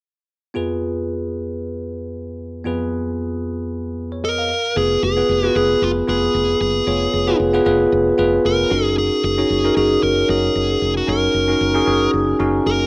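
A bell-like tine electric piano opens at 0.5 s, its bright, clean chords coloured by phaser and plate reverb as they move over a diminished harmony on F. This is a nostalgic, moody slice of 1980s-style pop at 114 BPM in 4/4, with a light swing on the sixteenths, cut from a longer piece. At 4.2 s a dark, smooth lead guitar takes up the melody in a narrow upper-middle register, overdriven and picked, sitting up front beside the keys. A woody fretless electric bass joins at 4.8 s, round and punchy with a hollow-body character, holding the low end softly beneath the other two. The harmony later shifts to E-flat minor seventh. Everything sits in a small, booth-like room, and the piano and guitar carry the soft haze of a home cassette recording.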